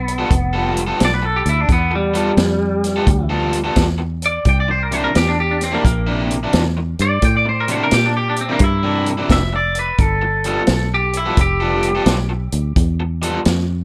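This electric blues shuffle rolls along at 87 BPM in 4/4 with a swung eighth-note feel in G mixolydian, and its mood is gritty and rollicking. The chords move from G9 to C9 at 4.5 seconds and back to G9 at 10.0 seconds. An electric guitar at the edge of break-up carries the melody with a twangy, scooped, compressed tone and a splash of spring reverb, stopping at 12.1 seconds. Alongside it, an overdriven semi-hollow guitar plays the riff with a bright, picked bite. A fingered electric bass adds a dark, round, foam-muted low end. A vintage drum kit in a small room provides a punchy kick, a medium-tuned snare and hi-hat, all with a rolled-off top. Every part sits up front in a light reverb, and the excerpt is cut from a longer piece.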